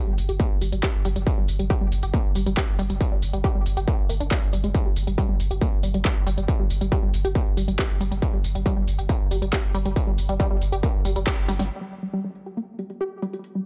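A dry cut from a longer driving, hypnotic peak-time techno track, built on a distorted, overdriven electronic kick up front, a round sine sub bass with overdrive and sidechain pumping, and a punchy, tape-toned analog drum machine of snare, handclaps, hi-hat, tambourine and crash cymbal, while a tight, detuned sawtooth synth riff with a plucky filter, chorus, phaser, delay and sidechain pumping runs throughout, until a band accent at 11.3 seconds and a drum fill at 11.5 seconds lead into a closing section where filter sweeps shape the drums and synth from 11.7 seconds.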